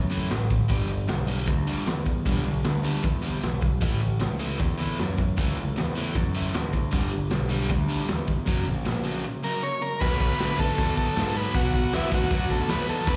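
Rowdy and raw, this garage rock clip at 155 BPM in straight 4/4 pairs a double-tracked, overdriven guitar riff with a growling picked bass and a gritty, boomy-kicked drum kit with a rolled-off top, all caught as a live gig through the venue's PA with club reverb, and a buzzy vintage combo organ with light vibrato joins on the melody at 9.4 seconds as the chords move to B minor at 10.0 seconds.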